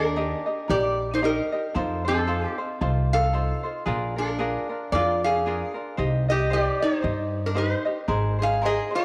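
Hawaiian music with a languid, sunny mood, moving at 114 BPM in 4/4 with a lazy swing in Eb major, heard as a short cut from a longer piece. A metallic, nasal resonator slide guitar, played with fingerpicks and a slapback echo, carries the melody up front, while a bright, fingerpicked ukulele supplies light accompaniment and a woody, growly upright bass thumps out pizzicato lines until 8.8 seconds. A moderate plate reverb lends the whole a spacious glow as the chords travel from Eb through F7, Bb7 and Cm to land on Abadd9.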